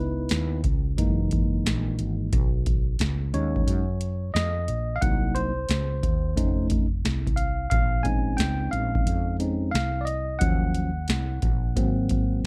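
A tine electric piano carries this short cut from a longer jazz-hop track, soloing from start to finish with a clean tone heard through its own built-in speakers. It moves through rich extended chords such as Dbm9, Gb13 and Bbm11. Beneath it, a woody fretless bass sounds growly and round, its amped, hollow-bodied tone sitting up front. A booming analog drum machine comes in at 0.3 s with a deep kick, crisp snare and metallic hi-hats, its tape-warmed sound re-recorded in a large room. The groove is a hip hop feel in 4/4 with swung sixteenths, and the mood stays cool and mellow throughout. The production is dark and warm with little reverb, and the tuning sits slightly below standard pitch, at A4 = 439 Hz.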